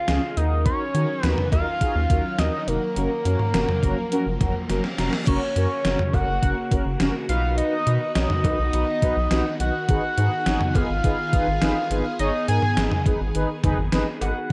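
A gated 80s digital drum machine with a thumpy kick, overdriven gated-reverb snare, cowbell and toms drives this cool synth-pop excerpt at 104 BPM in G# dorian, joined by a rubbery, bouncy square bass, a fat analog lead melody with vibrato and tape echo, mellow chorused synth brass and a swirling phased string machine, while a reverse cymbal from 4.4 seconds and a drum fill from 4.7 seconds lead into a new section at 5.3 seconds moving from F# to B to G#m, all carried by a light reverb and cassette tape sound.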